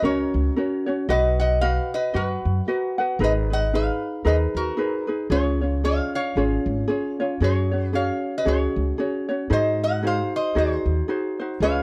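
Hawaiian music, sunny and relaxed with a swung lilt, in which a metallic, nasal lap resonator guitar played with slide and fingerpicks carries the melody over a light, fingerpicked ukulele and a woody, thumpy pizzicato upright bass on gut strings, all three up front in a dry, close 1970s-style studio sound, cut from a longer piece.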